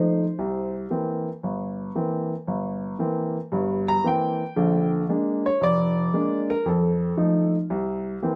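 A short, playful and sophisticated solo jazz passage cut from a longer piece, with a lossy haze over a wet small room, features a woody, up-front upright piano with long sustain swinging at 115 BPM in 4/4 across a span from F1 to Bb5, moving through C7, Bb7 and F7 before returning to C7 at 7.7 seconds, tuned slightly flat of standard pitch at A4 = 436 Hz.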